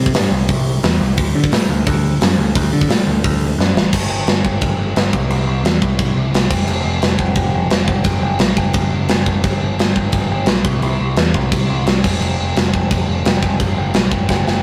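A growling, overdriven picked electric bass drives this rowdy, upbeat punk rock excerpt at 174 BPM in a straight 4/4, its bright, amped tone running from F1 to D3 throughout. A tight, up-front acoustic drum kit with bright cymbals, a medium-tuned snare and a firm, tight kick sits alongside in a big room sound, dropping in drum fills at 3.6 and 14.3 seconds as the opening section gives way to a longer second one at 3.9 seconds. The rough rehearsal-room recording carries a light reverb.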